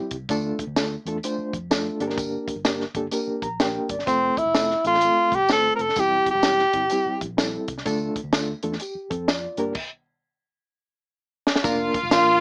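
Uplifting and warm, this short cut from a longer piece is uptempo 1960s-style soul with a swung eighth-note feel and a small-speaker, lightly reverberant sound. A reedy, worn electric piano with fast tremolo sits up front, slightly out of tune, playing accompaniment and a brief fill of its own. A compact cocktail drum kit with a punchy kick, high-tuned snare and dark cymbals drives things alongside a bright, jingly tambourine and a round, foam-muted electric bass. A clear, close-miked tenor saxophone enters at 4.1 s with a vibrato-laden pop melody. After a stop at 9.8 s broken by a drum fill, a lush, distant violin section arrives at 11.6 s with an expressive bowed second line.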